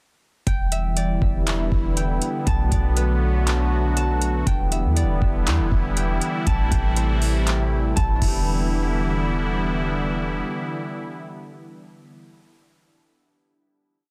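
Atmospheric cloud-rap hip hop in E minor, moving at 120 BPM with a half-time feel, carries a melancholic, hazy mood across this short, complete piece. A sweeping resonant pad holds sustained chords through Em7, Bm7, Em7 and Am7 before returning to Em7, its detuned sawtooth tone airy and bright with a noise layer, chorus and sidechain pumping. A concert harp, acoustic and ringing, plays a falling arpeggio in eighths repeated like a sampled loop, colored by tape echo. A clean 808-style bass lays long, boomy sub-bass notes with pitch slides that follow the kick, while a booming analog drum machine, overdriven and re-recorded in a small room, delivers a sparse half-time beat of deep kick, metallic hi-hat, handclaps and crash cymbal. The drums stop at 8.4 s and the bass at 10.4 s, so the final hit from 8.5 s leaves the pad and harp ringing out to about 12 s in a dense, heavily limited mix with little reverb.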